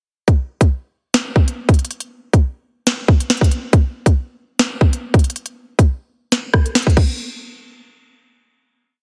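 Hip hop drill in a half-time feel, cold and dark, built entirely on an electronic drill drum kit that sits up front: a hard-clipped kick, sharp snare, rim clicks, crash cymbal and crisp skipping hi-hats with fast rolls drive the hook from 0.3 to 7.1 seconds. A final hit closes the piece at 7.2 seconds. The sound carries light reverb and a heavily compressed, radio-like character with a dulled top end.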